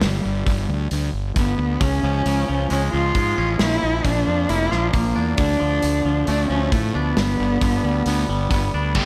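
A dark, bowed cello sings with vibrato and portamento through slapback echo over growly overdriven fingered electric bass and a loose indie drum kit with a punchy kick in a half-time 134 BPM feel, as a twangy clean electric guitar adds delayed arpeggios from 1.8 s across the G, C#, Bb and Dm chords in this cathartic, anthemic quiet-loud alternative rock passage bathed in lush hall reverb and big arena sound, until a high-gain distorted guitar and a thick fuzz guitar come in with a riff at 9.0 s.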